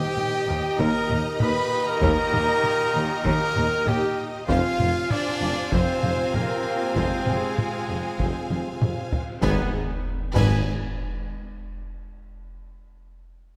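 Relentless and heroic, this cinematic orchestral film-score excerpt at 97 BPM in 4/4 sets an intense chamber violin section's vibrato melody over an airy silver flute and a smooth studio violin section as second lines, with a lush viola accompaniment, a focused symphonic string section, a tight vintage trombone section and mellow French horns holding sustained chords, distant trumpet stabs, a punchy tuba with double basses and cellos on the bass, close, dry hard-stick taiko drumming throughout and round soft-mallet timpani, while a cymbal swell, concert snare, bass drum and bright clash cymbals arrive at 7.0 seconds, leading to a drum fill at 8.5 seconds and a full-band accent at 9.4 seconds as the harmony moves from D# through Fm to G#m, all in a wet scoring-stage reverb.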